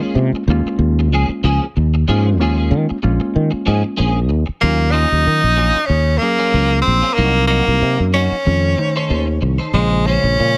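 An edgy, forceful tenor saxophone takes the solo at 4.6 seconds, sitting up front with vibrato and scooped notes as the harmony moves from Ebm9 through Cm7b5 and F7b13 to Bbm9 in this nocturnal, intense swinging jazz excerpt. Beneath it, a growly fretless electric bass sustains prominently, while a reedy, worn and slightly out-of-tune electric piano comps in the background and a bright, compressed clean guitar adds picked stabs treated with ensemble chorus. Light reverb surrounds the group.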